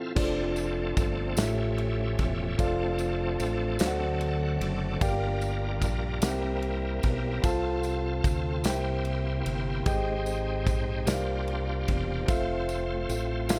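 Slow, reverent yet jubilant gospel in a straight 6/8, where a mellow tine electric piano carries the chords over a round, punchy fingered electric bass and a natural country drum kit with dark cymbals and a medium-tuned snare, a bright, shouting tonewheel organ with key click, slow rotary speaker and chorus vibrato sustains chords and adds fills at 0.0 and 3.8 seconds, a jingly tambourine sits in the background, and the dry, close sound moves through rich extended chords before resolving on Fmaj7.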